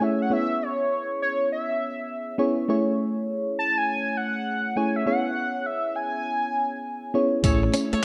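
New jack swing R&B in C# minor at 101 BPM with a swung 16th-note feel, slick and punchy, where a bold, detuned sawtooth lead doubled in octaves and treated with chorus, phaser and delay sings over a soft, warbling FM electric piano moving between C#m7 and Amaj7 until the lead stops at 7.1 seconds; a gritty, compressed sampler-style drum kit with thumpy kick, hi-hat and tambourine, a round, dark fingered dub bass and delayed mellow horn stabs arrive at 7.4 seconds, and a clean, direct electric guitar riff with ensemble chorus joins at 7.6 seconds, the whole mix set in bright 1980s-style digital production with moderate plate reverb.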